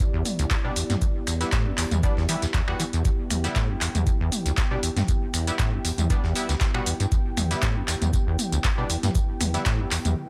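Driving and raw, this short acid house cut moves at 118 BPM in E minor with a light 16th-note swing, built around a squelchy, resonant sawtooth acid bass riff that runs a filter sweep throughout, carrying lush chorus and vintage 12-bit sampler grit up front. A deep analog kick and an electro drum machine of finger snaps, handclaps, metallic hats, tambourine and toms sit forward with a large-room character, while a very quiet, gritty breakbeat kit adds hi-hat, shaker and a medium-tuned snare underneath. A moody, detuned pad holds sustained chords with chorus and sidechain pumping, and from 0.6 s a nasal, band-passed chord stab cuts through with chorus, cassette tape coloring and tape echo, all in a dry space.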